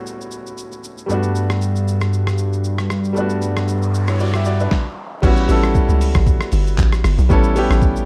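A hollow, bouncy log drum bass lands up front at the drop at 5.2 seconds, taking over from a fat, detuned sawtooth analog bass that holds G2 before a brief stop, in this hypnotic, soulful amapiano cut from a longer piece at 116 BPM with a swung 16th feel. A clear, polished concert grand piano carries the A13 and Gmaj13 chords over a gritty, compressed sampler-style drum kit of thumpy kick, medium-tuned snare, handclaps, rim click, shaker, hi-hat and crash, while a downlifter and noise sweep sit in the background. The dark production has little reverb and a layer of vinyl crackle.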